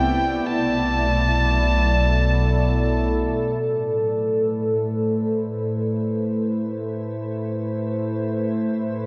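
A warbly, detuned tape-like pad sits up front in this melancholic, serene ambient passage in free time and A dorian, holding nostalgic lo-fi chords with chorus and its own reverb, moving from D69/B to Amadd9 at 3.6 seconds. A rich, intense electric violin with light vibrato and a smooth top sings a short bowed melody through diffuse ambient delay until 3.1 seconds, while a round, deep sine sub bass holds the low end until 3.6 seconds. A calm, organ-like drone with ensemble chorus rests in the background and fades in from 3.6 seconds, all set in a lush hall reverb in this excerpt cut from a longer piece.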